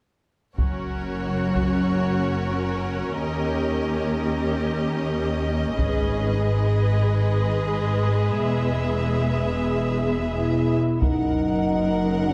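In a straight 4/4 pulse, this adventurous, triumphant excerpt from a cinematic orchestral score opens at 0.6 seconds with the full string body sounding together. Bowed double basses with a woody grain and expressive, soft-attack cellos anchor the low end. Rich, intense violas fill the middle, and a clear, focused violin section carries a lush second line above them. A taiko ensemble struck with hard sticks punctuates the passage in brief bursts at the opening, midway through and at the close, giving it a live-room weight. A French horn section enters up front at 10.4 seconds with smooth sustained chords, and at 11.0 seconds a warm, even violin section takes up the melody as the harmony returns home, all within a dark production and a moderate scoring-stage reverb.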